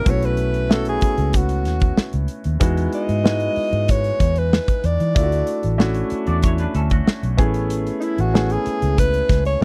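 A straight 4/4 groove at 94 BPM, played on a modern studio drum kit, drives this short slice of lush 1970s-style soul with a warm, romantic mood. The kit's tight kick, medium-tuned snare and hi-hat sound airy and polished from a small room, sitting up front beside a vintage muted, fingered electric bass whose dark, round, amped tone carries a foam-muted thud. A grand piano supplies intimate, natural accompaniment with long sustain and audible action noise, moving through B9sus4, Emaj9, Dmaj7 and Amaj7. Over this, a close-miked alto saxophone sings the melody up front in a warm jazz style, with light vibrato. Between 6.3 and 7.4 seconds, a clean electric guitar adds a brief twangy, compressed riff shimmering with harmonic tremolo. The recording is dry and close, in the manner of a 1970s studio, with little reverb.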